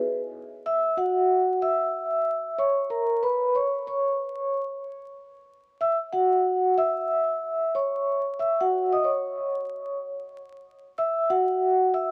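A soft-mallet vibraphone carries this mellow, cool hip hop fragment on its own, its metallic, ringing tone shimmering with a slow motor vibrato and sitting up front in the mix. The playing moves at 93 BPM in 4/4 with a lazy 16th-note swing, ranging from F#4 up to E6 in C# dorian. An analog delay trails the vibraphone's notes, and a moderate plate reverb gives them a lingering tail. For the first 10.3 seconds the line rests on a C# minor chord, after which it drifts on unanchored to any chord until the clip breaks off at 12.1 seconds, cut from a longer piece. The whole recording is steeped in worn cassette tape character, with warbly pitch drift and a bed of vinyl crackle that lend it a warbling, old-tape patina.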